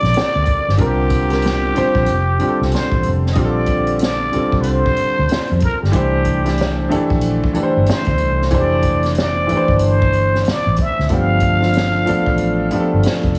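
R&B and neo-soul at 93 BPM in 4/4, this sultry, smooth cut from a longer piece rides a swung 16th-note feel over chords moving from Gm7 through Bb69 and Fmaj7 to G7. A close-miked trumpet with plunger mute carries the melody up front, raspy and growling with wah-wah colour, scooped notes, soft attacks and light vibrato. Beneath it sit a woody upright piano, a dark, round, foam-muted electric bass and a distant, roomy acoustic kit played with bundle sticks, with a high-tuned snare and punchy kick, all in a heavily compressed, radio-like sound with light reverb.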